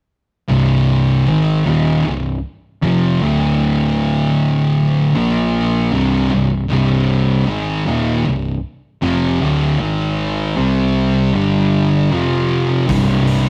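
Stoner and doom metal at 78 BPM in 4/4 and C minor, this brooding, sludgy cut from a longer piece sits in a rough rehearsal-room recording with tube saturation and light reverb. Two thick fuzz guitars carry the riff from 0.5 to 13.5 seconds, both distorted, picked and up front, spanning C2 to C4, with one sitting a little louder than the other. Beneath them, a hollow-body short-scale picked electric bass with overdrive holds the low end from C1 to C2, its tone dark, round and punchy. The harmony moves from C minor through power chords on D, B-flat, A-flat, G and F before settling back on C. Only at 12.9 seconds does an oversized low-tuned drum kit arrive with hi-hat and a boomy kick, sounding gritty in a big, pumping room.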